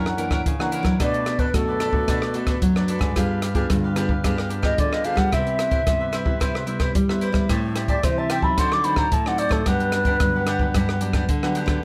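A pure, wooden baroque flute with vibrato and a soft attack carries the melody up front from 1.0 to 10.8 seconds in this sunny, festive samba-choro passage in G major at 111 BPM, over a crisp, bright picked cavaquinho, a fingerpicked nylon-string guitar with audible finger squeak, a full-bodied, deep nylon-string guitar bass, and a dark, smooth compact cocktail kit of hi-hat, rim click and punchy kick, all in light reverb as the harmony moves from F#7b13 through Bm7, G7b9, Cmaj7, Am7 and D7b9 to Gmaj7.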